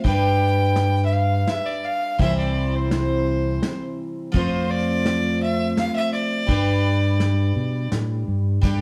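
A clear, earthy fiddle takes the solo in this gentle acoustic folk excerpt in three, its airy bow and light vibrato carrying until 7.9 s over a G, C, F, G progression. A bright, shimmering twelve-string guitar with octave-doubled strings and a punchy, amped electric bass sit up front, while a smooth brush kit with dark cymbals and a tight kick keeps time until 8.8 s. A large, wet studio reverb places the small band further back in the room.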